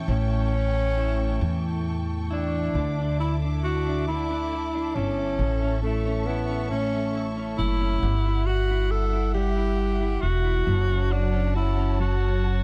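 Romantic and swaying, this six-eight pop ballad in D major moves at a slow 45 BPM, cut from a longer piece, with a breathy, whispered tenor saxophone carrying the jazz-style melody up front from 0.1 s, its soft attack, vibrato and scooped notes giving it an intimate feel. Beneath it, a woody pizzicato upright bass sits close and prominent, a double-tracked clean electric guitar recorded direct adds compressed, picked accompaniment, and a distant, lush string section holds smooth bowed chords in the background. The dry, close 1970s-style studio sound carries a studio reverb, and the harmony drifts from A7 through Dsus2, A and Emadd9/G before settling on F#m.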